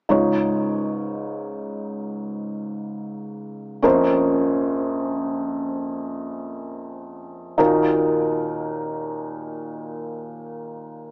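A felt-muted upright piano opens this short, emotional pop excerpt in free time, its soft, mellow chords sitting up front and intimate as they move from Dbadd9 to Bbmadd9 at 3.8 seconds and Ebm at 7.6 seconds, carrying a hopeful mood through a moderate plate reverb and a small-speaker sound.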